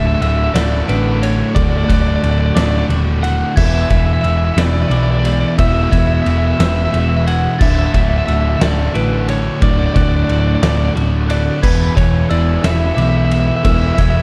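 A hopeful, soaring post-rock passage in 6/8 at 60 BPM opens in D lydian, swaying between D and E chords: a dark, double-tracked fuzz guitar riff and a round, amped hollow-body short-scale bass hold the low end while a slightly broken-up lead guitar carries the melody through analog delay. An oversized, low-tuned drum kit enters at 0.2 seconds, up front and gritty, with a fat snare, punchy kick, crash and ride cymbals set in a bright stone room. Behind them, a very quiet, twangy twelve-string electric guitar and a soft, bell-like rubber-mallet glockenspiel with analog delay play arpeggios over the reedy, breathing chords of a hand-pumped harmonium, all within a dark, warm small-room production.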